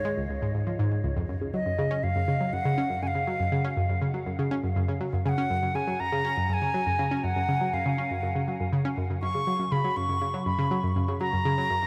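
Ambient in F# major at 121 BPM, this expansive, cosmic excerpt pairs an airy, woody flute melody with delay against a round, detuned analog pluck riff carrying chorus and delay, its filter sweep heard over the first 1.3 seconds, before an F#maj7 chord omitting the third settles in, all bathed in a huge reverb.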